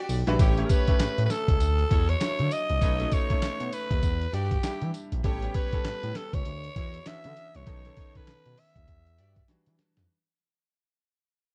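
Dark, roomy production frames this punchy, bouncy new jack swing snippet with a swung sixteenth feel, where a compressed, thumpy sampler-style soul drum kit of kick, snare, hi-hat, handclaps and tambourine sits up front beside a smooth, gliding sawtooth-and-square synth bass, a clear concert grand piano with deep lows accompanies the ninth-chord changes, lush bowed symphonic strings add vibrato-laden stabs in the background, and a raspy, bright solo alto saxophone carries the melody until 9.5 s, when a drum fill closes out the fade.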